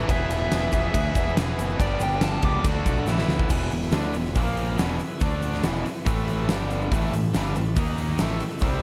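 A huge arena drum kit drives this swaggering classic rock clip at 140 BPM, its punchy kick, fat snare and bright cymbals sitting up front in a pumping hall, while a growling overdriven bass and two picked guitars, one biting and one tight and distorted in the background, churn out the riff over chords moving from E through G and D. A dark, smooth lead guitar with overdrive and slapback echo sings a melody only until 2.6 seconds, and a drum fill at 3.1 seconds ushers in a new section of power-chord changes. Underneath, a very quiet tonewheel organ shouts sustained chords with key click and a slow rotary spin, and a grainy egg shaker rattles close and dry in the background, all in light studio reverb.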